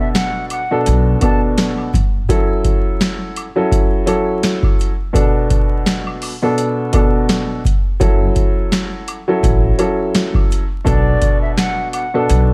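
A dry, crackling vinyl-tinged cut from a longer gritty, tough boom-bap hip-hop track at 84 BPM with a swung 16th feel, where a dark, mellow upright piano with audible action noise and cassette-tape grit cycles between Bm7 and F#m7 up front, a booming analog drum machine supplies a deep kick, crisp snare and metallic hats, a woody pizzicato upright bass on steel strings drops in briefly and then returns at 8.0 seconds, a tube shaker, woodblock and group handclap sit quietly in the background, and an airy, straight-toned concert flute with a soft attack floats a short melody at the start and again at 10.9 seconds.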